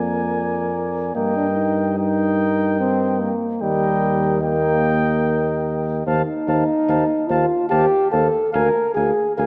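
Classical brass quintet music in Eb major at 73 BPM in a rubato 3/4, stately and triumphant, cut from a longer piece, with a mellow trumpet carrying the melody with light vibrato and a smooth top over a flugelhorn second line, an up-front clear euphonium and a distant, roomy French horn in the background as accompaniment, and a vintage-toned tuba up front on the bass, all playing throughout the 9.5 seconds in a dark, warm production with moderate concert hall reverb.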